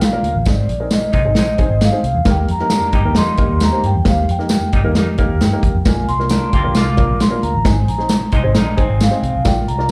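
A straight 4/4 groove from a punchy, up-front drum kit and a bright, dry tambourine drives this joyful snippet of uptempo 1960s-style soul, heard live through a club PA, where a round, foam-muted electric bass and a woody, slightly detuned upright piano support a mellow vibraphone melody with slow motor vibrato and slapback echo, a tight saxophone section enters at 1.1 seconds with a second line, and a lo-fi, slightly broken-up electric guitar riff sits in the background from 2.7 seconds as the chords move from Ab to Eb to Bb and back.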